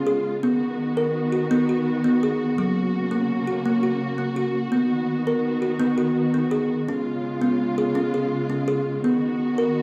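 A dreamy, calm world meditative piece in an unhurried 6/8, cut from a longer work, where a woody, hollow-boxed kalimba plays bright, short thumbnail-plucked arpeggios over veiled, con sordino strings holding lush bowed chords with vibrato, both playing throughout, moving from B to F# and C# before settling back on B, all bathed in the dark haze of an echo-chamber reverb.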